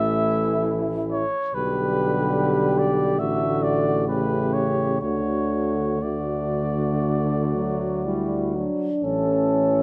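A mellow cornet carries the tender, lyrical melody up front with light vibrato in this short, hymn-like classical brass band excerpt in D major, moving with rubato at 59-74 BPM in 4/4. Beneath it a flugelhorn with a smooth top sings a second line, while a clear euphonium sits in the background and a vibrato-tinged trombone fills out the accompaniment over a present, warm tuba bass, all five sounding together from start to finish. The chords pass through A, G/B, D/A and A9 to settle on D at 5.0 s before returning to A at 9.0 s, captured with close, detailed microphones in a moderate scoring-stage reverb.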